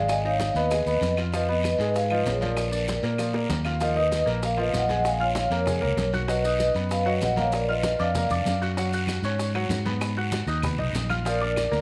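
A straight 4/4 salsa groove at 194 BPM drives this fiery, danceable latin excerpt, where a ringing, metallic vibraphone with soft mallets carries the melody over a bright, woody upright piano, a dark, punchy fingered electric bass up front, and a bed of percussion (thick-skinned congas, tight high-tuned bongos, woody claves, a raspy guiro and grainy, distant maracas), with a drum fill at 3.2 seconds, the claves dropping out from 3.8 to 9.1 seconds, and the vibraphone falling silent at 8.6 seconds before a brief return, all under light reverb.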